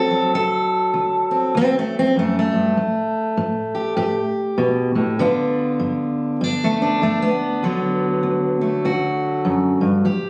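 Gritty and soulful, this short excerpt of acoustic country blues moves at 99 BPM in 4/4 with a swung eighth-note feel, set in D mixolydian. A single fingerpicked steel-string dreadnought guitar plays throughout, up front and full-bodied with fresh strings and audible finger squeak, ranging from D2 to A4 over a D7, Gadd9/A, G7 and D progression. The phone-captured sound of the roughly 10-second clip sits in moderate studio reverb with compression and a dulled top end.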